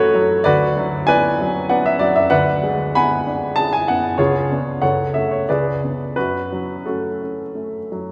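Stormy and brooding, this romantic character piece for solo upright piano moves in a rubato 3/4 between 84 and 102 BPM in F# minor. The woody, vintage-toned piano sits up front with a short sustain, spanning A1 to B5 as it passes through Bm/D, G#m7b5/D and a tense C#7b9 before settling on F#m at 6.2 seconds. A wet church reverb with a 3.0-second tail surrounds the instrument in this brief excerpt, which is cut from a longer piece.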